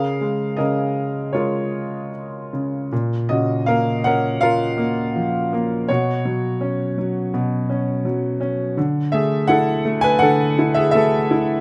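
A lone grand piano opens this calm, lyrical classical fragment on a Db6 chord, its boxy, up-front tone captured by close, detailed microphones with a light reverb. Played with a free rubato in 4/4, it moves into a new passage at 2.9 seconds that passes through Bbm, Bsus2 and Dsus2, spanning Bb2 to Ab5. The instrument's long sustain lets each chord linger until the fragment ends at 11.6 seconds.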